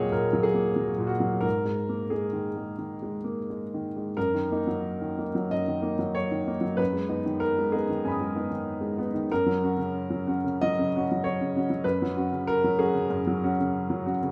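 Tender and hopeful, this neoclassical minimalist piano piece unfolds in 4/4 with a rubato feel, its tempo drifting between 86 and 99 BPM. A lone upright piano, woody and boxy with audible action noise, sits intimately up front and spans D#2 to D#6, moving from D#m7 and G#sus2 into a second passage at 4.2 s that passes through D#m/F# and G#m/F# before settling on F#. A moderate scoring-stage reverb surrounds the instrument in this short fragment cut from a longer work.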